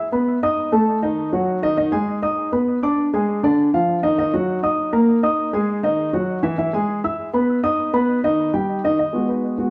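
A concert grand piano opens this short fragment of fiery, driving jazz on its own, set in a straight 4/4 at a brisk pace. Its tone is warm with a deep bass, reaching from D3 up to E6, and it sits up front in the mix with a touch of analog delay. The harmony moves restlessly through diminished and augmented colours, passing from D#dim at 0.6 seconds through Ddim, D#m and an Emaj7 before landing on G#m7 at 9.0 seconds. A wet small-room reverb with a short tail surrounds the instrument, and the room is heard from further back. The piano sounds until 9.7 seconds, where the passage is cut off from the longer piece.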